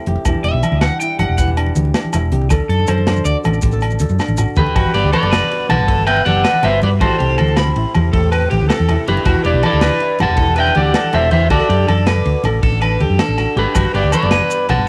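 A dark, boxy flamenco guitar, thumb-plucked, opens this carefree, danceable highlife guitar-band excerpt in G major. It is joined at once by a round, up-front hollow-body electric bass, a tight funk drum kit with a dry, polished sound and cassette-tape colour, low-tuned congas sitting in the background, ringing agogo bells and grainy maracas. The groove moves in a straight 12/8 at 107 BPM. A clean electric guitar solo carries the first 4.8 seconds, while a twangy, slightly broken-up electric guitar plays tape-echoed arpeggios throughout. At 4.6 seconds a second, picked electric guitar at the edge of break-up takes the melody, with subtle chorus and tape echo. Drum fills mark the turn at 4.8 seconds and return at 12.8 seconds, over a cycling Em7, D and Gmaj7 progression, all set in light reverb with the easy charm of a home cassette recording.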